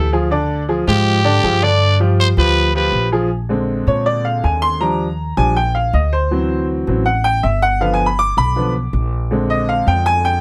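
A growling, raspy trumpet carries the melody up front for the opening 3.1 seconds of this passionate, fiery salsa excerpt, its vibrato punchy and gritty. A bright, woody upright piano comps throughout and takes a brilliant solo from 3.3 seconds over a chord cycle running from Bb7 through Ebmaj7, D7 and G7. Beneath it, a dark, thumpy pizzicato upright bass with gut strings anchors the low end, all captured by close, detailed microphones with light reverb.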